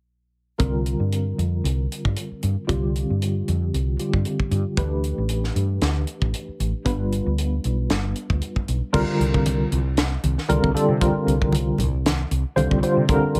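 At 0.6 s a mellow tine electric piano, a woody fretless electric bass and a tight funk drum kit start together on a funky, nocturnal electric jazz fusion groove at 115 BPM in 4/4, with a light sixteenth-note swing. The worn, slightly out-of-tune electric piano carries the accompaniment through a combo amp, colored by medium tremolo, analog chorus and plate reverb, over chords of C9sus4, Dsus24 and G7 before returning to C9sus4. Up front beside it, the fretless bass sounds dark, growly and round. The small-room acoustic drum kit adds a high-tuned snare, kick, hi-hat and crash cymbal. At 8.9 s, as the second section begins, very quiet low-tuned congas with a bright, thin-skinned tone join, sitting close, and this excerpt from a longer piece stops at 13.4 s under a light overall reverb.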